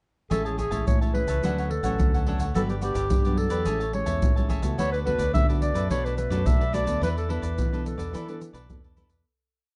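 From 0.3 seconds, a joyful, playful samba-choro at 107 BPM in A major has a soft-attacked clarinet up front spinning classical motif-based phrases through plate reverb and tape echo, over crisp sixteenth-note cavaquinho strumming, dark fingerpicked nylon-string guitar with thumb bass and syncopated plucked chords, a bright, direct fingered electric bass samba figure, and close pandeiro, shaker and deep surdo, all in a warm production that fades out from 7.0 seconds.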